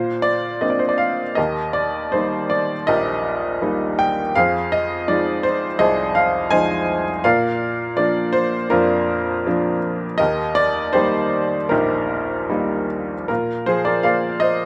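Flowing in a free rubato around 72-83 BPM in 4/4, this short classical excerpt of lyrical solo piano in Eb major feels tender and calm, cut from a longer piece. A single upright piano, bright and woody with a slightly detuned, brilliant edge, sits up front with long sustain and audible action noise, ranging from Bb1 to Ab5 as the harmony moves through Eb, Fm7 and Bb. Close, detailed microphones and light reverb give it an intimate presence, with a new section arriving at 13.3 seconds just before the clip ends at 14.7.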